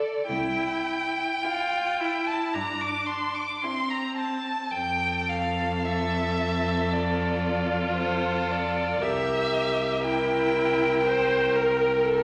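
Vinyl crackle sits over a wet scoring-stage reverb in this serene excerpt from a slow, rubato romantic movement for string quartet, its harmony moving from C to F to C7. An expressive first violin carries the melody up front with vibrato and portamento, while a rich, focused viola supplies accompaniment from the start and a rich, focused cello joins with the bass just after. A dark second violin enters at 1.4 seconds, played sul tasto with a soft attack and light vibrato, adding an intimate, close inner line.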